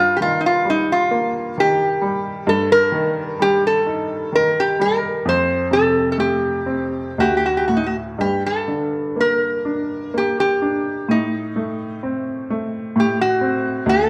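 A metal-body resonator slide guitar and a bright upright piano begin together, opening a haunting, mournful Celtic slow air in 3/4 that moves with a rubato feel at roughly 58-67 BPM. The guitar carries the melody up front, its acoustic, nasal, metallic voice played with fingerpicks and a slide and sitting in the middle register. The piano accompanies from the low bass up to the middle range, its tone brilliant and woody with a natural, short sustain that keeps it close and present. The harmony drifts through Eb/G, F and D before settling into G harmonic minor at 8.2 seconds, where a Gm chord gives way to Adim at 11.1 seconds. A moderate recital hall reverb wraps the pair in a sense of space, and the recording, cut from a longer piece, ends at 14.1 seconds, tuned to A4 = 444 Hz.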